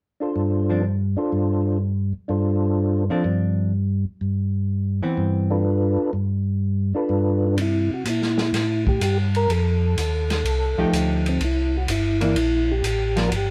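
A soft, flute-like percussive tonewheel organ carries the melody up front through a slow rotary speaker and chorus vibrato in this greasy, soulful soul jazz organ trio excerpt at 125 BPM, swung in 4/4 and settling into C mixolydian from 7.6 seconds. A round, mellow second organ with audible key click holds down the bass through its own slow rotary speaker, while a dark, clean hollow-body jazz guitar adds picked accompaniment in two stretches. A distant, roomy soul drum kit with a tight kick and a rolled-off top enters at 7.6 seconds, and moderate studio reverb places the whole trio further back in the room.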